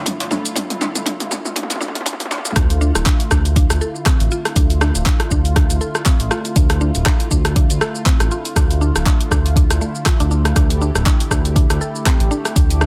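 Afro house at 120 BPM in D minor with a spiritual mood, where a short build-up of hand-struck djembe with metal rattles, a deep house kit fill and a filter sweep on a woody, round mallet-like pluck arpeggio (given 12-bit sampler grit and dub echo) gives way at 2.6 seconds to a drop led by a mellow sawtooth-and-square synth bass, all riding a deep, tape-warm electronic kick, a kit of handclaps, hi-hat, rim click, shaker and toms, and a detuned, slow-attack analog pad whose chorused chords pump against the kick in a dry mix.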